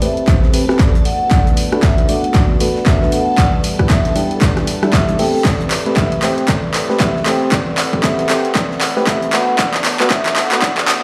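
Heard through a big sound system in a bare room with large studio reverb and a high-pass filter, this smooth, hypnotic deep house piece at 116 BPM in A dorian rides an overdriven electronic kick entering at 0.3 s and a punchy analog drum machine of handclaps, hi-hat and rim click, with a very quiet, gritty cloth-damped drum kit beneath. Hollow, dark organ stabs pump with sidechain, chorus and tape echo under a filter sweep, and a metallic vibraphone melody rings through tape echo. A warbling analog pad holds chords moving from Am9 through Bm7 and G6, shimmering string-machine violins sustain a texture above, and a build-up and drum fill run throughout.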